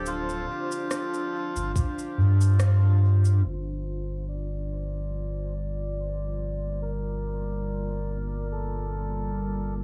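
Spacious and hazy, this ambient dub excerpt drifts at 71 BPM in G minor with a gently swung feel, moving from Dm7 to Gm7 at 3.4 seconds as a filter sweep runs over the rest of the passage. A reedy, breathy melodica carries the melody through dub echo above a deep, moody sawtooth pad of detuned, chorused chords, while a round, sine-like sub bass sits up front. Tape-warm electronic shaker and rim click play until 3.4 seconds, joined at 1.8 seconds by a single overdriven, muffled kick, with a band accent landing at 2.6 seconds in a small, lightly reverberant room.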